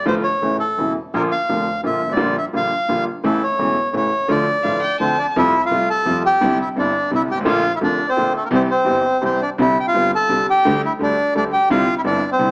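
Passionate and dramatic, this rubato tango in three-time opens with a reedy bandoneon singing the melody up front, over a bright, brilliant vintage concert grand piano with a deep bass and a smooth, bowed double bass with vibrato sitting in the background. A rich, biting violin with light vibrato adds a brief, intense second line from 4.6 to 5.3 seconds, just before the music moves into a new section at 5.4 seconds. The sound has a small-speaker quality and a moderate large-studio reverb, and the passage is cut from a longer piece.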